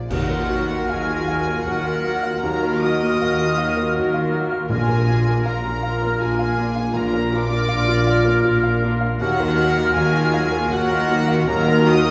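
A warm violin section opens on a floating, sul tasto melody over dark, mellow piano accompaniment in this longing, moving excerpt of cinematic film score, a rubato piece in 3/4 at 79 BPM in Eb harmonic minor, while a rich second violin line, flute, clarinet and oboe add inner voices over woody, lush violas, smooth-topped French horns, cellos and double basses. Dark cymbals and concert bass drum mark a brief accent at the start, and round, very quiet timpani sound from 4.7 to 5.8 seconds as the harmony moves from Ebmadd9 to Bb and back. The orchestra sits in the resonant reverb of a recital hall.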